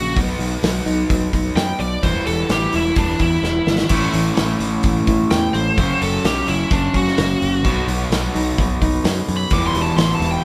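A straight 4/4 pulse from a loose indie drum kit, up front with a tight kick and a pumping small-room sound, drives this restless, cathartic quiet-loud alternative rock fragment, where a biting lead guitar with overdrive solos up front over a dark, hollow-body semi-hollow riff, a modern, bright picked bass, a full-bodied jumbo acoustic guitar arpeggiating in the background with audible finger squeak, and a crunchy guitar riff with spring reverb that joins at 3.9 s just after a drum fill, the whole band captured playing live in one room.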